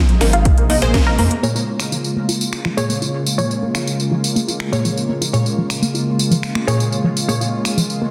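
Bittersweet and emotional, this progressive house excerpt in Bb minor moves at 123 BPM in a straight 4/4, shifting from an Abadd9 chord to Bbm7 at 1.4 seconds. A smooth, detuned analog pad with chorus and tremolo holds sustained chords, while a lush, detuned unison pluck fires off stabs through dub echo, and a tight, driving sequenced synth runs arpeggios coated in chorus, phaser and echo, with filter sweeps shaping both the pad and the arpeggio, all pumping against the sidechain. The house drum kit brings finger snaps, metallic hats, tambourine and a cracking, softly clipped snare, while very quiet bright congas, a deep, thick saturated sub bass and a punchy, tape-tinged kick appear only briefly near the start, the kick sounding from 0.5 to 1.0 seconds within a dense, heavily limited mix and a moderate digital room reverb.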